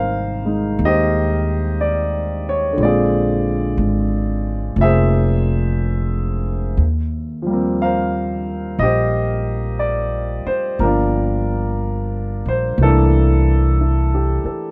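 Jazz ballad in a tender, romantic mood, this short passage, cut from a longer piece, moves at a slow 60 BPM in 4/4 with a gentle swing on the eighth notes. A grand piano supplies the accompaniment, its natural, long-sustaining tone sitting up front across the middle of the keyboard. An acoustic upright bass, played pizzicato on steel strings, carries a woody low line close to the listener. Both instruments begin together at the start, and the bass stops at 14.5 seconds, just before the piano ends at 14.7. The harmony drifts through Abmaj9, Bb9, Eb6 and Gm7 before arriving on C13, heard in a dry, close studio sound with a 1970s character.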